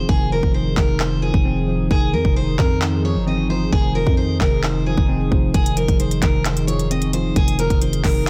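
A short, eerie and dark trap cut opens with a picked, full-bodied steel-string acoustic guitar melody softened by low-pass filtering and delay, over a worn, slightly out-of-tune tine electric piano, a hollow, airy chorused pad in the background and a growling, buzzy 808-style bass, with a crisp, up-front trap drum kit of hard-clipped kick, hi-hats and handclaps joining at 0.1 seconds in a half-time feel, all sitting dry in a dense, heavily limited mix.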